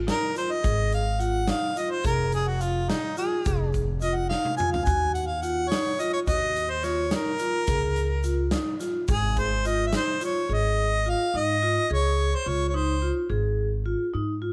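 Under light reverb, this bright, intricate fragment of progressive instrumental band music moves in a straight 5/8 at 213 BPM in Ab mixolydian, led by a jazz-style harmonica solo up front with a soft attack, light vibrato, scooped notes and a smooth top, over a woody, thumpy pizzicato upright bass with dark gut strings. A metallic, ringing vibraphone with medium hard mallets and its motor off plays arpeggios, while a big-room rock kit with a punchy kick and medium-tuned snare adds a drum fill at 4.3 seconds, and a very quiet, grainy egg shaker sits beneath. The drums stop at 10.3 seconds as the solo ends, leaving bass, harmonica and vibraphone to pass through Db, with bass and vibraphone returning to Ab5 before the cut.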